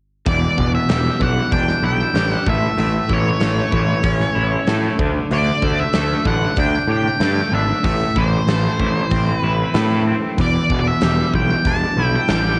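Quiet-loud alternative rock in a brooding, dark mood, cut from a longer piece, where an up-front octave-fuzz lead guitar carries a dark, distorted melody over a bright, twangy twelve-string electric guitar picking clean, compressed arpeggios through harmonic tremolo. A growly, overdriven fuzz bass sits up front beneath them, while a huge arena drum kit of punchy kick, fat snare and hi-hat pumps in a hall-like room, with the chords moving from Em7 through A, Dsus4 and Am back to Em7. The home cassette recording has a dulled top end and a faint mains hum, and the guitars and drums carry a tape character.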